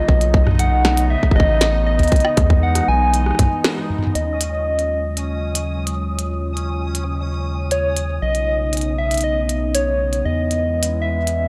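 A round, keys-like FM synth lead carries the melody up front, its gentle struck notes coated in chorus, tremolo, tape echo and vintage 12-bit sampler grit. Beneath it sit a warbling, detuned tape-like pad, which takes a filter sweep from 4.2 seconds, and a resonant, bubbling texture of random filter steps. This intricate, cerebral IDM fragment rides on a rubbery, hollow square bass, a glitchy kit of clicky hats, rim clicks, a tiny snare and toms, and a tight overdriven kick that stops at 3.5 seconds, just before a break and band accent at 3.6 seconds, all over chords moving through B9, Emaj7 and Ebm11 in a dry, gritty hardware sound with light digital ambience.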